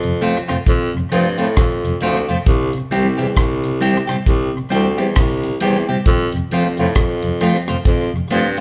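Roots reggae with a laid-back, warm mood and a gentle swing on the sixteenth notes, heard in this short excerpt cut from a longer piece. A deep, dry acoustic drum kit sits up front, its tight kick joined by hi-hat and rim clicks. A warm baritone saxophone with a smooth top carries the low bass part in a pop style, also up front. A clean, twangy electric guitar enters at 0.2 s with picked accompaniment bathed in spring reverb. A mellow tonewheel organ fills in underneath with a round, dark tone, audible key click and a slow rotary speaker. The band plays live together in one large studio with moderate reverb, moving from F to C at 2.5 s and back to F at 6.1 s.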